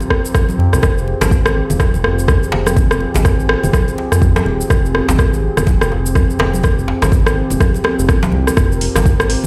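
Heard through a big sound system in a bare stone room with light digital ambience, this hypnotic, earthy afro house piece at 124 BPM in F minor rests on a single Fm7 chord, carried by a smooth, detuned, warbling vintage analog pad with chorus and sidechain pumping, while an electronic kick and a drum kit of metallic hi-hats, rim click and shaker swung on the sixteenths sit overdriven and up front, the deep kick entering at 0.1 seconds, a round, mellow bass pumps in from 0.6 seconds, ringing, hard-hand congas play in the background, and a tight, cracking djembe joins at 1.2 seconds.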